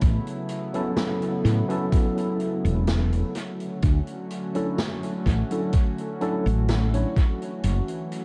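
A round, woody fretless bass sits up front in this woozy, dreamy vaporwave fragment, cut from a longer piece and rolling along in an unhurried, straight 4/4. Beside it, a thumpy, sampler-style electronic kick carries vintage 12-bit grit. Further back, a swinging big-band kit adds hi-hat and a medium-tuned snare, given the same gritty sampler treatment plus tape echo. A warbling, nostalgic pad of detuned sawtooth and triangle tones holds sustained chords under chorus, moving from A69 to Dmaj7 and then F#m7. At 0.7 seconds a barky, clean tine electric piano enters with subtle chorus and tape echo. The echo-heavy mix opens into a brief break at 7.6 seconds.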